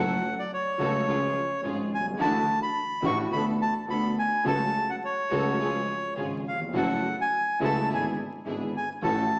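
Played rubato in 4/4 at about 106 BPM, this brief tango excerpt in F# minor moves with a passionate, melancholic pull, cut from a longer piece and running just over 9 seconds. Up front, a reedy, bright bandoneon carries the melody between C#5 and C#6, close-miked and full. Beside it, a dark concert grand piano supplies mellow, boxy accompaniment with deep bass and long sustain. Further back, a lush studio string section adds bowed ensemble stabs with expressive vibrato, while a single bowed double bass holds the low line, smooth and even, in the background. The harmony moves from F#m through C#, Dadd9, Bm7/D, F#m/C# and C# before closing on F#m7 and E7/G#. The whole recording sits in a recital hall reverb heard from deeper in the room, colored by vinyl crackle and a small-speaker sound.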